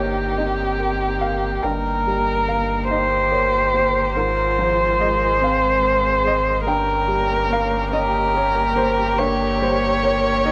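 Neoclassical piano and strings in a reflective, fragile mood, moving in a rubato 6/8 through a brief excerpt of a longer piece. A single muted violin, veiled and singing with vibrato, carries the melody up front, while a con sordino cello traces a dark second line in the background, a woody, slightly detuned upright piano with short sustain plays the accompaniment, and a chamber string section holds soft-attacked sustained chords behind them. A deep, clean sine sub bass anchors the low end, and a moderate spring reverb with small room ambience surrounds the ensemble.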